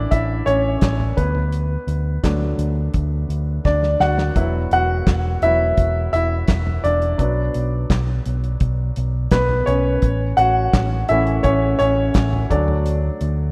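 A clear, woody upright piano leads this dramatic, earnest piano-driven pop excerpt, taking the solo role over a round, amped picked electric bass. A damped, dry 70s drum kit with a tight kick, handclaps, hi-hat, snare and toms sits up front, breaking into a fill from 3.7 to 4.4 seconds as the chords move through A, D, Esus2 and Bm. A lush hall reverb surrounds the rough home demo mix, and the music is cut from a longer piece.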